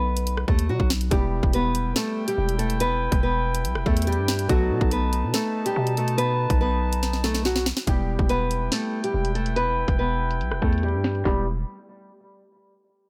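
This cold, tense drill track rides a half-time feel and is cut from a longer piece. A fingerpicked nylon-string guitar carries the melody with a small, acoustic warmth up front, while a dark, mellow grand piano with long sustain sits in the background as accompaniment. Underneath, a growling, buzzy 808-style bass with a fast attack and decaying sine tone sits prominently alongside an electronic drill kit of hard-clipped kick, sharp snare, bright hi-hats, handclaps and rim clicks. A brass ensemble enters at 1.1 seconds with smooth-topped, classical-style sustained chords as the harmony moves between B7 and Em. A drum fill at 7.0 seconds leads into a new section at 7.9 seconds, where a filter sweep colours the sound, and the whole mix sits in a small room ambience shaped by a low-pass filter.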